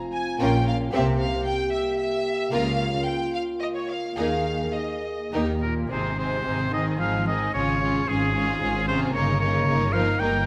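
A dark, distant French horn section opens this stormy, restless excerpt from a quick classical-period movement in triple time, holding sustained chords as the rich, focused violins take up the melody above a second violin line, a warm, smooth viola accompaniment in the background, and a bass line from expressive cellos and smooth double basses, all bowed with vibrato and played with a rubato feel. At 5.6 s the horns fall silent and a bright, close-miked solo oboe steps up front with a soft-attacked second line, as the harmony turns from minor-tinged tension toward a settled home chord. A moderate concert hall reverb gives the orchestra a spacious, roomy setting.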